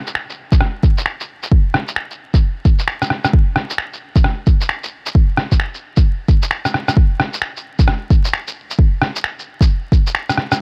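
A swung 4/4 groove at 132 BPM drives this ghostly, wistful future garage excerpt, with a muffled, pitched-down layer of electronic shaker, finger snaps and rim click starting at 0.1 seconds, its snare and percussion dulled by low-pass filtering. A deep, layered electronic kick drum joins at 0.5 seconds, sitting up front with a tape-warm weight. The dry, gritty recording carries a bed of vinyl crackle, lending the sparse beat a worn, haunted atmosphere.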